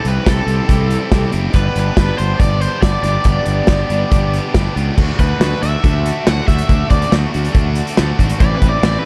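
Carefree yet wistful, this short indie rock passage in a straight 4/4 feel is cut from a longer piece and moves through C and G before shifting to D and a closing A minor. A loose acoustic drum kit sits up front with a punchy kick, a medium-tuned snare, hi-hat and crash, and the small room gives the kit a pumping quality. Beneath it, a fingered electric bass growls with fuzz and overdrive, direct and amped and pushed forward in the mix. A double-tracked, picked electric guitar drives the riff with bright overdrive, while a cranked stack guitar carries the melody with a bright, overdriven, picked tone and slapback echo. From 5.0 seconds the overdriven guitar breaks into a solo that runs to the cut, all within a dark, warm small-room production.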